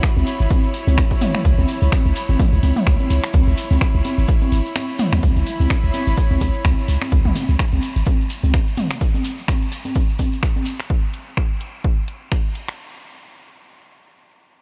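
Cool and hypnotic, this minimal techno excerpt sets a punchy, tape-warmed electronic kick up front against a swung analog drum machine of finger snaps and hi-hat, a grainy shekere in the background, overdriven electronic congas and toms with analog delay, a deep sine sub bass with a pitch-drop attack, and a floating, sul tasto chamber string section, with the bass and strings both pumping under sidechain in light reverb, while the kick briefly drops out at 4.8 seconds and the strings stop at 7.1 seconds.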